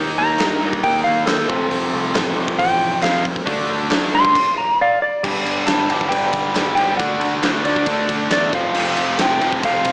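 Sunny, driving classic rock at 136 BPM in 4/4, with a bright, double-tracked overdriven guitar riff up front, a growling overdriven picked bass, and a dark, twangy clean lap steel melody entering at 0.2 s with slide and volume swells and an electric slide guitar solo through 5.2 s, all over a reedy electric piano in the background, a very quiet tonewheel organ with slow rotary chords, a punchy, polished rock drum kit from 0.4 s with bright cymbals, and crisp, dry handclaps, set in a wet studio reverb with a small-speaker sound as chords move from Eb through F, D and G in this excerpt.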